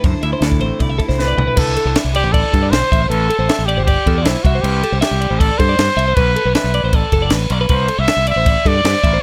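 A dark, clean electric guitar, fingered, opens this restless math rock and midwest emo excerpt at 157 BPM, alongside a bright, twangy twelve-string electric guitar picking compressed arpeggios high in its range, a growling fingered bass with overdrive sitting up front, and a compact cocktail drum kit with a punchy kick, high-tuned snare and dark cymbals, dry and up front. As a drum fill arrives at 1.2 seconds, a breathy trumpet takes the melody, its soft attack, light vibrato and whispered, intimate tone placed close and forward in the mix. The mellow guitar drops out at 3.1 seconds, leaving the twangy twelve-string, overdriven bass and drums to carry the intricate harmony beneath the trumpet. The chords move from D9 through C69, Am7 and Bm7, returning repeatedly to C69 for an unresolved, searching quality. A light reverb surrounds the parts, and the passage is cut from a longer piece.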